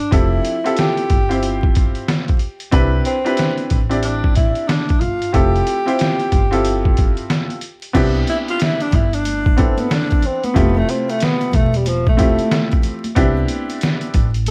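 A swung, relaxed jazz-hop groove rides on a gritty, pitched-down sampler-style drum kit with a thumpy kick, joined by woody pizzicato upright bass and a brilliant, worn baby grand piano with audible action noise, while a breathy tenor saxophone with light vibrato and scooped notes carries the smooth melody through plate reverb and tape echo, moving into a solo at 7.9 seconds as very quiet egg shaker and congas enter, the whole cut from a longer piece and set in a small room under a layer of vinyl crackle.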